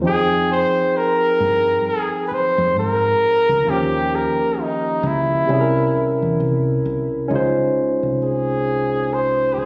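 A warm flugelhorn carries the melody up front, singing in a pop style with light vibrato and scooped notes that give this short neo-soul and R&B passage its introspective, soulful mood. Underneath, a barky tine electric piano plays the accompaniment through a combo amp, its bright tone lightly overdriven and set in plate reverb, which the horn shares. A deep dub fingered electric bass anchors the low end with a dark, round, punchy sound that is direct and amped. The groove sits at a slow 66 BPM in 4/4 with a gentle swing on the sixteenths, moving through Fm9, Eb7 and C7b9 in F minor before shifting to Dbmaj9 at 7.3 seconds for a new section. The recording has the intimate character of a phone capture in a small room with moderate reverb, and it is cut from a longer piece, ending at 9.7 seconds.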